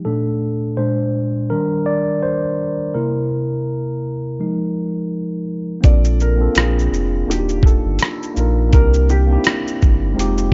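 A mellow, clean tine electric piano plays alone through the first 5.8 seconds of this cosy lo-fi hip hop excerpt at 83 BPM in Bb major, its low-pass-filtered chords moving from Bbmaj7 through Ebmaj7 and C7 to Fm7, before a gritty, compressed, pitched-down boom bap drum kit with a thumpy kick, hi-hat, rim click and shaker, a deep, round sine sub bass, and a soft, felt-muted upright piano melody, boxy and intimate with audible action noise, lush chorus and delay, join in over swung 16ths, the upright piano falling away at 9.6 seconds, all set in light reverb with a cassette-tape character.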